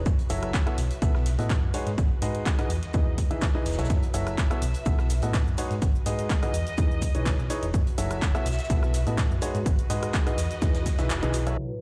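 Feel-good, joyful piano house at 125 BPM, where a clear, woody upright piano riff with tape echo pumps over a round, dark hollow-body electric bass, an up-front punchy electronic kick, dry analog drum-machine claps, rim clicks, hi-hat and shaker, a very quiet arena kit, and veiled, muted strings fading in through F#m7, B7sus4, G#m7 and Emaj7, until the kick drops out at 11.1 seconds and a sub drop and a brief lush violin chord mark the impact at 11.6 seconds.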